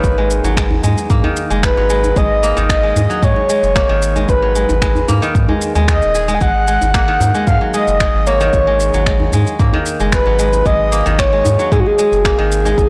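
A steady, straight 4/4 pulse at 113 BPM drives this hypnotic, meditative slice of organic downtempo in G# minor, built on a deep, tape-warm electronic kick, layered shaker and finger snaps with soft clipping on the snare, and a hard-handed djembe sitting in the background. A round, dark analog bass with transformer saturation anchors the G#m7 to C#sus4 change at 6.4 seconds, while a crisp, ringing kora plays fingerpicked arpeggios through tape echo. Above it all, a breathy, flute-like synth lead carries the melody with soft attack, vibrato, chorus and tape echo, all set in light digital ambience within an overdriven, blown-out recording cut from a longer piece.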